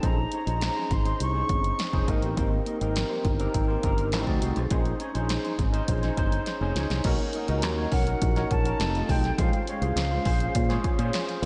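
Polished 1980s jazz-funk pop in B-flat dorian at 103 BPM, this nocturnal, slick passage, cut from a longer piece, moves in a straight 4/4 over rich chords such as Bbm11, Abmaj9 and Bmaj9. A punchy analog drum machine sits dry and up front with crash cymbal, hi-hat, kick and snare, and plays a fill from 6.5 to 7.0 seconds that leads into the second section. A fingered electric bass gives a growly, direct low end, while an overdriven tine electric piano, barky and gritty through a combo amp with ensemble chorus, carries the accompaniment near the front. A clean, twangy electric guitar with subtle chorus plays a scooped riff in the background. A reedy silver concert flute, pure and distant with vibrato and tongued notes, states the melody at the start and returns at 7.9 seconds. The dreamy mix is soaked in a lush hall reverb and kept soft at the top.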